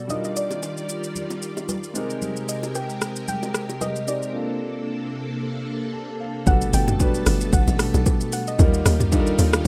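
Amapiano at 113 BPM in 4/4 with a lightly swung sixteenth feel, relaxed and warm in mood, cut from a longer piece. A soft, round pluck carries the melody between D5 and G5, its dark tone thickened by chorus and tape echo. A concert grand piano with audible action noise and deep bass plays the accompaniment, while a shimmering string machine of violins holds sustained chords beneath, and bright congas and bongos sit in the background. An electronic deep house kit with a deep kick, metallic hi-hats, rim click, shaker and toms sits up front throughout. The chords move through Ebmaj9, Abmaj9 and Bbmaj9 until a grand piano fill at 5.7 seconds leads into a drop at 6.5 seconds, where a tight, punchy log drum bass enters between G1 and Eb2 as the harmony shifts to Gmaj9 and back to Ebmaj9. The mix has the light reverb and rough feel of a home demo.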